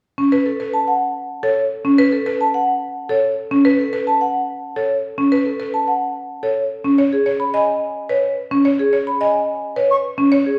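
Classical minimalist pattern music in 3/4 at 108 BPM, bright and propulsive in B mixolydian, cut from a longer piece. A buzzing, woody marimba plays up-front arpeggios from 0.2 s while a metallic, ringing vibraphone with motor vibrato carries the melody above it, as the harmony moves from a B5 chord to an open, chordless stretch at 6.6 s. A distant concert flute adds a brief arpeggio note near 9.9 s, all set in a reverberant recital hall heard from further back in the room.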